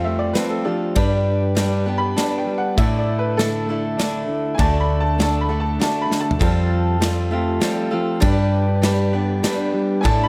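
Nostalgic and open-road in feel, this folk rock and heartland rock excerpt moves at 99 BPM in 3/4, with a woody upright piano taking a solo throughout over boxy picked swing-style acoustic guitar, a slightly broken-up electric guitar riff, a round hollow-body electric bass, very quiet flute-like tonewheel organ chords through a slow rotary speaker, and a natural country drum kit with a punchy kick that enters at 0.4 seconds and plays a fill at 6.1 seconds, all set in light reverb and studio ambience.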